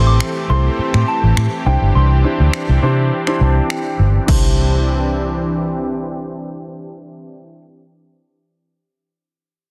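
A dense, heavily limited modern master sits in a moderate hall reverb, framing a summery, carefree dance-pop excerpt at 103 BPM in C major that moves from Am7 to Cadd9. A round, foam-muted vintage electric bass sits up front, while a detuned supersaw pad with a slow attack and a warm grand piano pump with the sidechain beneath a pure, mellow FM synth bell carrying the melody through chorus, phaser and tape echo. A house kit of punchy kick, finger snaps and crash plays until 4.4 seconds, the bell stops at 3.7 seconds, and the piano adds a fill from 3.1 seconds.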